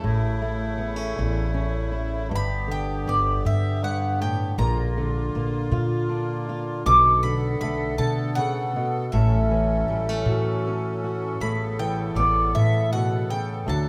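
A round, double-strung mandolin carries the melody up front in this hopeful, gentle acoustic folk piece, moving in an unhurried 6/8 at 53 BPM by the dotted quarter. Beneath it sit a fingerpicked steel-string guitar with audible finger squeak, a woody, dark pizzicato upright bass, and, further back, a sweet, airy accordion holding reedy sustained chords with light tremolo tuning. The harmony moves from A through G and Bb to Bm7, A6 and Aadd9, and the band sounds as though it is playing live together in a large studio with moderate reverb, in a passage cut from a longer piece.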